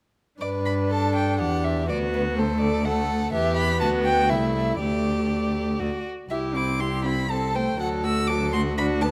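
A lingering recital hall reverb of about 1.4 seconds surrounds this short excerpt from a quick classical-period movement for string quartet in G major, set in 3/4 at 122 BPM with a rubato feel that is spirited and graceful. The four players enter together at 0.4 s and bow through to 9.1 s. The first violin carries the melody in a high register, its close, warm tone shaped by vibrato, a soft attack, portamento and expressive phrasing. Beneath it the second violin plays a smooth, even second line, while the viola, heard from a more distant position, gives focused accompaniment with vibrato. The cello anchors the bass up front with a rich sound and a smooth top, as the harmony moves from G through D and E minor before coming to rest on D.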